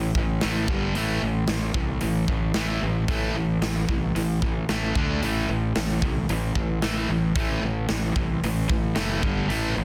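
Hard rock at 112 BPM in a heavy, aggressive straight 4/4, this short cut from a longer piece sets a bright, picked distorted guitar riff over a darker, overdriven guitar sitting in the background, while a round, punchy fuzz bass played with the fingers and a big-room acoustic kit with a punchy kick and medium-tuned snare sit up front, all moving through A5, G5, Am and D5 in a dense, heavily limited modern master.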